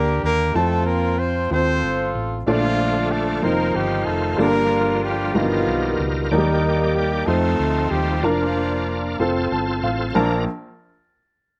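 A mellow horn section carries the melody up front, its soft attack, light vibrato and octave doubling giving this jubilant, hopeful gospel excerpt in 6/8 at 62 BPM a jazz-style glow over a Bb major progression that moves from Ebmaj7 through G7alt to a close on Bbmaj7. A woody upright piano with audible action noise and a slapback echo accompanies throughout and adds a fill at 9.2 seconds, while a round, dark hollow-body electric bass sits up front beneath. At 2.5 seconds a bright, shouting tonewheel organ enters with sustained chords, lightly overdriven through a slow rotary speaker and chorus vibrato, all in a dry outdoor sound with little reverb.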